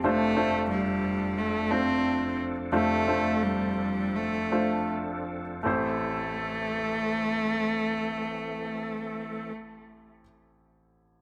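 A rich, bowed cello carries the melody up front, a single close player with smooth, even tone and vibrato in its voice. This bittersweet, earnest pop fragment in A minor moves in a straight 4/4 at 77 to 91 BPM, slowing through its opening stretch before the harmony settles from Dm7/F onto Am at 5.7 seconds. A clear, polished baby grand piano plays the accompaniment, present and spanning low bass to the middle register, and it rings on alone after the other parts stop at 9.5 seconds until 11.2 seconds. Behind them, a reedy tonewheel organ holds sustained chords with chorus vibrato, audible key click and a slow rotary speaker, sitting in the background. A moderate recital hall reverb adds an earnest sense of space around this short cut from a longer piece.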